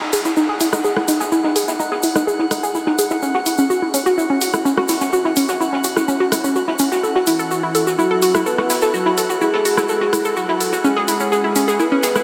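A dreamy, reverb-soaked mix with a vast ambient tail opens this euphoric, expansive fragment of progressive house, moving at 126 BPM in a straight 4/4 in E major. A bright, up-front analog pluck carries the arpeggios from the start, its round sawtooth-and-square tone touched with ring modulation, chorus and delay while a filter sweep runs across the whole passage. Above it floats a glassy texture of drifting overtones, calm and sustained with a slow attack and long release. Underneath, a layered electronic deep house kit ticks out hi-hat and rim click, joined by a very quiet acoustic brush kit on hi-hat and snare and a grainy egg shaker from 0.1 seconds. At 7.3 seconds a soft, octave-layered synth lead enters with a full, dark, detuned sound, its sustained notes colored by vibrato, phaser, chorus and delay. The harmony moves from Emaj7 through F#5 and B7sus4 to a rootless Amaj7.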